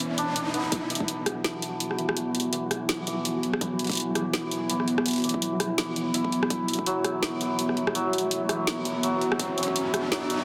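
Dark and cinematic, this half-time drum and bass passage moves at 166 BPM in 4/4 with a swung sixteenth-note feel, cut from a longer piece and built as one long build-up. A deep, moody analog pad holds sustained detuned chords, colored by chorus, 12-bit sampler grit and sidechain pumping, while a bright, shimmering santur plays hammered arpeggios through a low-pass filter and tape echo, with a filter sweep running across it from 0.7 seconds. Up front, the drum kit brings a woody snare with soft clipping, a rim click and bright hi-hats, re-recorded in a small room. A tight, layered electronic kick enters in short bursts, at 0.7 seconds, between 3.6 and 6.8 seconds, and again at 9.4 seconds. Beneath it all, a long sine-based 808-style bass sits barely audible from 0.7 seconds, and a pulsing, tempo-synced gated texture with chorus and built-in reverb hovers in the background. An electronic riser opens the passage and returns at 7.7 seconds, all set in a huge ambient reverb and a dense, heavily limited modern master.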